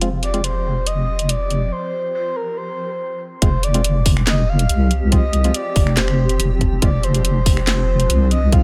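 A brooding, cavernous deep dubstep cut at 141 BPM in half-time, opening on a cloudy granular pad, a deep wobbling bass held up front and a garage kit of finger snaps, handclaps, hats and cracking snare, joined at 0.2 s by a breathy, flute-like lead with vibrato and dub echo, while a hollow organ stab with dub echo sweeps through a filter before a break at 1.7 s gives way to the drop at 3.4 s, where a tight electronic kick enters and the harmony settles on F minor.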